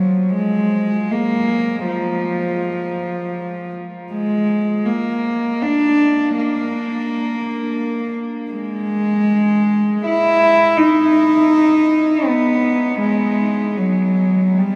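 A classical piece for unaccompanied cello in free time, yearning and mournful, this 14.8-second excerpt comes from a longer work. One bowed cello carries the whole line between F3 and E4, played sul tasto with a soft attack, so its tone comes across as pure and floating, sitting up front yet somehow distant. A huge, wet ambient reverb with a 7.9-second decay places the instrument in a vast, echoing space.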